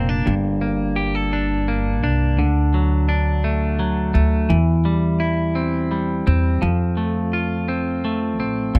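Heartfelt and tender, this short passage from a six-eight pop ballad pairs an up-front, twangy clean electric guitar, picked and compressed, with a woody, thumpy pizzicato upright bass, both playing throughout a small room's ambience as the chords move from Gmadd9 to D, C/E and F.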